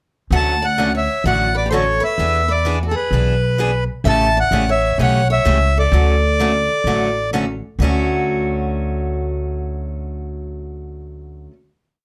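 This short, playful piece of acoustic string swing in the jazz manouche style sits in a moderate club room with a snug half-second reverb. The close-miked accordion carries the melody up front, its reedy, full tone touched by plate reverb as it spins short motif-based sentence phrases. Beneath it, a picked steel-string guitar with a boxy, parlour-style brightness picks out four-to-the-bar rhythm, short and accented on two and four. A second picked guitar, softer and rounder, shadows the tune with a harmony line mostly in thirds. The woody, thumpy upright bass plays a two-beat root-and-fifth pattern with walk-ups at a lively 128 BPM in D major, moving through Dmaj7, E7 and A7. The accordion and harmony guitar drop out at 7.3 seconds, leaving the rhythm guitar and bass to ring out the final Dmaj7 chord until 11.5 seconds.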